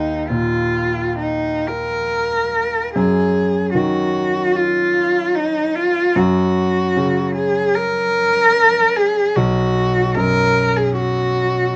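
Yearning and solemn, this romantic classical duo for cello and grand piano unfolds in a flexible, rubato four-beat pulse, and it is cut from a longer piece. A single bowed cello carries the melody throughout, its rich voice shaded with vibrato, soft attacks and expressive portamento, and it sits forward as the most prominent part. Beneath it, a clear concert grand piano supplies the accompaniment in a low register, with deep bass and a smooth, vintage character, also placed up front but a little under the cello. The harmony moves from Eb to Ebm over Gb near 3.0 seconds, settles on Gb around 6.2 seconds, and turns to B at 9.4 seconds. Light reverb gives the pair a gentle sense of space.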